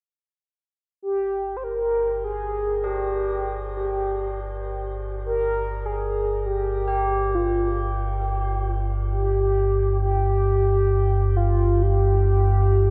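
The horn-like synth lead opens at 1.0 seconds, a round, warbling voice with vintage sampler grit, chorus and vibrato, carrying a sustained melody between F4 and C5 through shimmer reverb and tape echo. At 1.4 seconds a deep, rumbling drone settles in beneath it, spanning G1 to G2 with a wave-folded, slow-attack tone and a long release, sitting up front alongside the lead while a filter sweep moves through it. Tubular bells arrive at 2.8 seconds, fading in with soft, padded-hammer arpeggios that ring metallic and solemn, lower in the mix and trailed by their own shimmer and echo. This is a dark ambient drone piece in G phrygian at 67 BPM in 4/4, built on a G5 chord and cut from a longer work. A vast cathedral reverb with a 6.2-second decay surrounds the whole, giving the ominous mood a cavernous, brooding weight.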